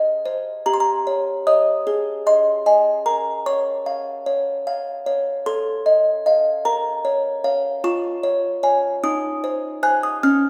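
A lone music box, delicate and tinkling with the airy ring of a large box, sits up front in this dreamy, tender classical lullaby, cut from a longer piece and moving at a gentle 50 BPM in a straight 6/8. Its plucked notes span Db4 to Gb6 and bloom into a moderate concert-hall reverb. The harmony drifts from Ab through Bbm and F7/A before settling on Ab/Eb near 9.0 seconds.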